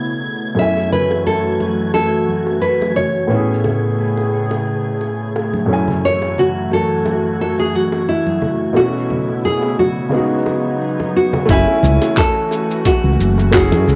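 A grand piano with audible action noise and an intimate, up-front tone opens this sunset chillout piece, joined at once by a soft, chorused, warbling pad under a filter sweep and a faint, wind-like breathy texture high above. At 0.6 seconds a bright, full-bodied nylon-string guitar takes the melody, fingerpicked with finger squeak and touched with vintage 12-bit sampler grit, tape echo and plate reverb. Distant bongos and congas enter moments later, sitting in the background as if in a large room, while the harmony drifts through wistful, suspended ninth and seventh chords over a lightly swung groove. At 11.5 seconds the airy texture ends and the groove lands: a round, dark fingered electric bass comes up front, alongside a dusty soul sampler-style kit of cabasa, handclaps and hi-hat and a thumpy electronic kick, both compressed and gritty. Cassette-tape saturation colours the home-recorded sound in a small room, and the track cuts off at 14.0 seconds as part of a longer piece.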